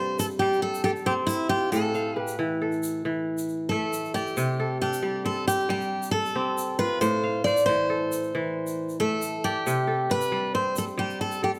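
Hypnotic and flowing, this brief cut from a longer West African traditional piece moves at 91 BPM in a straight 12/8 in C major, with ringing, crisp kora arpeggios and a picked dreadnought steel-string acoustic guitar melody sitting up front, a grainy egg shaker entering at 0.2 s, all captured by close, detailed microphones within a moderate recital hall reverb.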